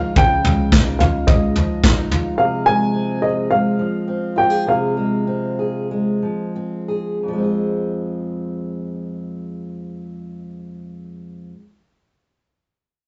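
Yearning, wistful indie folk in F minor and straight 4/4 at 86-108 BPM, this fragment of a longer piece opens with an intimate upright piano melody full of audible action noise, an up-front fingerpicked steel-string acoustic guitar that carries on until 11.6 s, and a woody, thumpy and very quiet pizzicato upright bass, joined at 0.2 s by a punchy, up-front brush drum kit that drops out at 2.2 s. The harmony moves from Dbadd9 to Fm/C as the tempo slows from 2.4 to 7.2 s before settling on Fm, with the rough rehearsal-room sound carrying tube saturation, dulled highs and a wet studio reverb.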